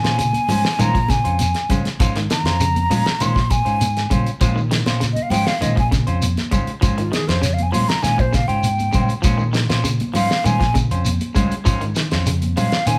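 A breathy, hollow jazz flute takes a solo up front over a hypnotic, funky afrobeat groove at 99 BPM in Bb dorian, resting on a single Bbm9 chord, with a tight, fat-snared 70s drum kit, a dark, round fingered bass, a slightly broken-up guitar playing twangy arpeggios in the background, clean stabs from a semi-hollow electric guitar, grainy shekere entering at 0.1 seconds and bright, high-tuned congas at 0.2 seconds, all captured as a band playing live in one room with light reverb in this 13-second cut from a longer piece.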